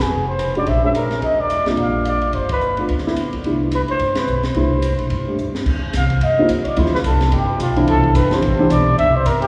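A breathy, whispered trumpet carries the melody up front with scooped notes and a soft attack, leading a relaxed small-group swing and bop excerpt bathed in a wet cathedral reverb. A woody, thumpy pizzicato upright bass and a compact cocktail kit with dark cymbals and a high-tuned snare drive the swing, with band accents at 2.5 and 4.1 seconds and a drum fill at 5.4 seconds leading into the second section. A mellow baby grand piano, its action noise audible, accompanies from 0.6 to 8.7 seconds over chords moving from Fm through Ebmaj9 to a closing Cmaj7.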